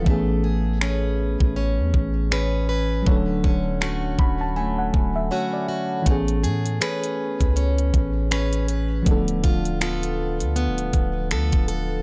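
Dreamy and tender, this contemporary R&B excerpt in A major moves at 80 BPM with a swung sixteenth-note feel, drifting through Amaj9, Dmaj7 and Dm6 chords. A soft, round FM electric piano with chorus supplies dark accompaniment and a fill from 3.8 to 6.1 seconds, while a boxy, picked plugged-in steel-string acoustic guitar plays arpeggios through tape echo, finger squeaks audible, over a deep, sine-like 808-style bass with long decaying notes. Up front, an electronic trap kit of knocking kick, crisp hi-hats and finger snaps drops out from 5.3 to 6.1 seconds, all captured in a dry, gritty hardware recording with little reverb.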